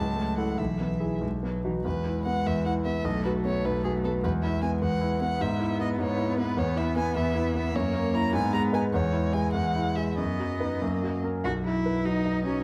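The clear grand piano sits up front in this quick classical-period movement for piano trio, its intimate, natural tone carrying audible action noise as it supplies the accompaniment from B1 to C#5. Above it, a single bowed violin sings the melody with a smooth, even vibrato and a warm, close presence, while one bowed cello adds a rich, focused second line beneath. The mood is cheerful and spirited, moving in 6/8 at about 92-104 BPM counted in dotted quarters, with a rubato feel that lets the phrasing breathe. The music begins in E major and turns to B major from 6.6 s, with harmony passing through chords such as F#7, G#m and C#m/E before settling on B. Close, detailed microphones sit within a wet recital hall reverb of 1.6 s, and a layer of vinyl crackle lends the sound an aged patina. The passage is cut from a longer piece, running just 12.6 s.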